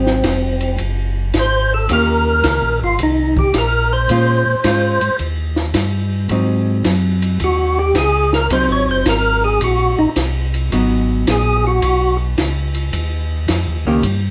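A live-in-one-room sound with a short, wet studio reverb frames this soulful, greasy soul jazz organ trio excerpt in a swung 4/4. Up front, a fat, lightly overdriven tonewheel organ carries the melody through a slow rotary speaker with chorus vibrato, percussive third-harmonic attack and key click, and it stops at 12.2 seconds, while a second, round and mellow tonewheel organ voice supplies the bass line through its own slow rotary speaker. A dark, clean, picked hollow-body electric archtop guitar comps beneath over changes moving from Ab7 through Eb7 and Bbm7, and a compact, dry cocktail kit with dark cymbals, a high-tuned snare and a punchy kick keeps time across hi-hat, ride, snare and kick.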